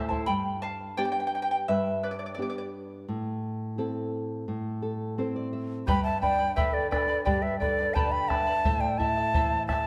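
A straight 2/4 pulse at 86 BPM carries this melancholic, earthy Andean folk passage, cut from a longer piece and moving between G and Am. Dark, fingerpicked nylon-string guitar with audible finger squeak runs throughout, joined at the start by shimmering double-strung charango and a single round thump of bombo, with a guitar fill from 4.5 to 5.9 seconds. At 5.9 seconds the bombo and charango return as a bright, airy quena takes the up-front melody with vibrato, shadowed by a breathy, hollow shakuhachi second line carrying slapback echo, all within a moderate stage reverb.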